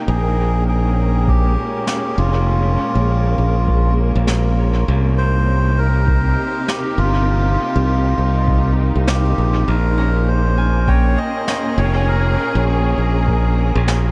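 Muted, veiled strings hold bowed chords with vibrato from the start, while a bright concert harp plays ringing arpeggios through tape echo in the background, setting a deep, meditative ambient dub mood at 100 BPM in Bb dorian, swung on the 16ths. A reedy, breathy melodica carries the melody with its own tape echo over a growly, punchy fingered electric bass up front, and from 1.3 seconds a deep analog kick sits back in the mix beside a brushed snare thrown into dub echo. The chords move from Bbm7 to Cm7 and back, with the mix soaked in a huge, dreamy reverb, in this section cut from a longer piece.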